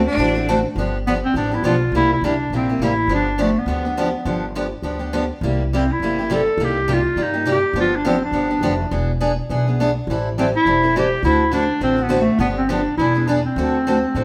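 A woody, gut-strung upright bass opens this lively, swinging excerpt of acoustic string swing at 206 BPM in G mixolydian, joined at 0.2 seconds by a full-bodied, up-front picked dreadnought guitar and at 1.1 seconds by a breathy clarinet whose scooped notes, light vibrato and smooth top carry the jazz melody through a G7, C7 and Cm7 progression, all set in the wet reverb of a stone room where the trio plays live together.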